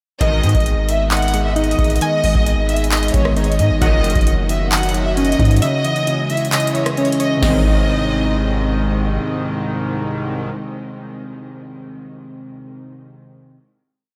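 A distant, lush studio violin section carries a looping, vibrato-laden melody with tape echo over an eerie, menacing half-time trap beat at 133 BPM, joined by a very quiet, twangy resonator-pluck counter-melody, nostalgic lo-fi synth keys warbling through an eighth-note arpeggio, a detuned tape-like pad sustaining chords in the background, edgy sync-sweep polysynth stabs, long deep 808 sub-bass notes with pitch slides, and a booming analog drum machine with crisp snare, metallic hats and fast hi-hat rolls, all set in a dreamy mix soaked in huge reverb; the kick drops out at 5.6 s, and the piece settles onto a final G# chord at 7.4 s.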